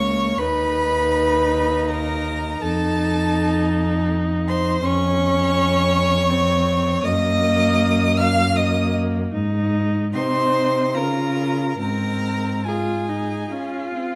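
A single bowed first violin carries the melody high above the ensemble, its rich, smooth tone shaded with an even vibrato, in this tender, serene slow romantic movement for string quartet. The pulse moves in a rubato 3/4 between 68 and 83 BPM, settling into Db major from 4.8 s after opening on B/D# and F7 harmonies. The second violin adds a warm, distant second line beneath it, while the viola sits close with a smooth, vibrato-laden accompaniment. The cello anchors the bass up front, even and bowed, and is the loudest voice of the four. Close, detailed microphones catch the players within a moderate recital-hall reverb. Cut from a longer piece, the passage has the violins drop away at 13.9 s, leaving viola and cello to ring on alone until 14.2 s.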